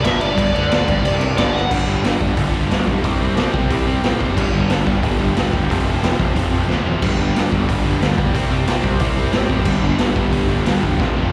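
Upbeat, rowdy punk rock at 180 BPM, this cut from a longer piece opens with a biting lead guitar melody, carrying slapback echo and delay, for its first 1.7 seconds, while two bright distorted rhythm guitars (one double-tracked, both with slapback) and a dark, compressed overdriven guitar churn out riffs in the background, a growly fuzz bass sits up front, and a gritty garage drum kit with a boomy kick and rolled-off top drives along with fills around 1.5, 6.7 and 11.0 seconds, all heard like a live gig through the venue's PA with recital hall reverb.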